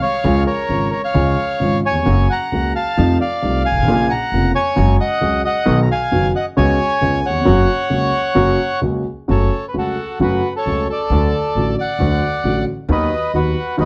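A rubato feel in 4/4 gives this tango a pulse that stretches and pulls, lending the passage a passionate, tense mood. The bandoneon carries the melody from the very start, its reedy, smooth voice sitting up front in the mix. Just after, at 0.2 s, a dark concert grand piano enters with accompaniment, its mellow tone, deep low end and short sustain giving a vintage character, while an upright bass played pizzicato adds a woody, steel-strung foundation beneath. After opening in F# major, the harmony turns to minor at 9.3 s, moving through an F#m chord to D and then B/D#, which deepens the tension. Light reverb places the trio in a modest space, and the passage is cut from a longer piece, stopping at 13.9 s.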